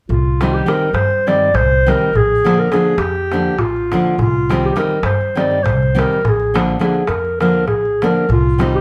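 Restless and fiery, this short cut from a longer Balkan wedding-band piece in 7/8 puts a distant, roomy clarinet up front in a classical-style solo over fingerpicked, full-bodied nylon-string guitar with audible finger squeak, woody pizzicato upright bass on steel strings, and a vintage, band-limited clay-shell darbuka, all played live in one room with a moderate large-studio reverb as the chords move between Cm and Bb.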